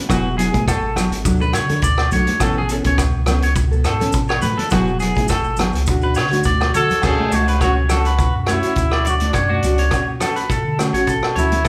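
Heard as a band playing live in one room, with a moderate large studio reverb, this sunny, carefree highlife guitar excerpt moves at 104 BPM in 4/4, lightly swung on the sixteenths. A full-bodied, fingerpicked nylon-string guitar and a twangy, slightly broken-up electric guitar playing arpeggios ride over a deep, clean sine sub bass and an up-front, gritty vintage drum kit with dark cymbals and a punchy kick. Ringing agogo bells, grainy maracas and bright, soft-handed congas, which join at 0.5 seconds, sit in the background. During a drum fill that starts at 6.3 seconds, a warm trumpet with light vibrato and scooped notes takes the solo melody from 6.8 seconds as the chords move from Eadd9, D and Aadd9 to Dmaj7.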